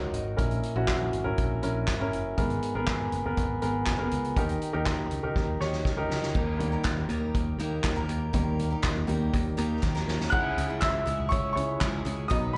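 A straight, steady 4/4 pulse drives this piano-led pop fragment, cut from a longer piece, with a driving and earnest mood. A soft-mallet drum kit sits distant and roomy, its fat snare and punchy kick padded by mallets on drums and cymbals, with fills closing phrases, while a bright, growly picked electric bass runs underneath. The grand piano carries the accompaniment up front, present and polished with a slapback echo, over chords moving through A#dim, G#madd9 and D# before settling on C#m, where the piano takes a solo at 10.3 seconds. At 6.3 seconds a woody picked steel-string acoustic guitar with old strings enters with a riff, also touched by slapback echo, and a very quiet, crisp group handclap joins at 6.8 seconds. The whole sounds like a live gig heard through a venue's PA, with light club reverb and a muffled high end.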